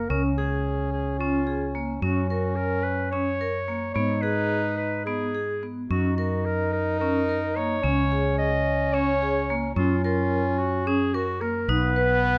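A mellow clarinet carries the melody from the very start, joined at once by a clear French horn on a second line and a round, dark fretless electric bass up front, while a ringing vibraphone with medium hard mallets and motor vibrato enters at 0.1 seconds with metallic arpeggios. This restless, playful piece of contemporary chamber music moves in a straight 7/8, its chords drifting from C# through F# and G#m to C#sus2, F#maj7 and finally B. Close, detailed microphones and light reverb keep this short excerpt intimate.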